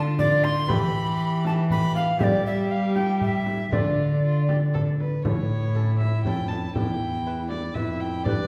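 Heard from further back in a reverberant recital hall, this short cut from a longer renaissance-style consort dance moves at 119 BPM in a straight 3/4, with a courtly yet rustic mood over chords such as Dm, Em, G and A. A nasal, gut-strung violin carries the melody with light vibrato, while a dark, bowed cello sits up front on the bass and a delicate, fingerpicked lute with double strings murmurs its accompaniment in the background. From 0.2 s an airy, chiffy tenor recorder adds a crisp second line and a small, bright frame drum taps under soft hands, before a new section arrives at 5.2 s.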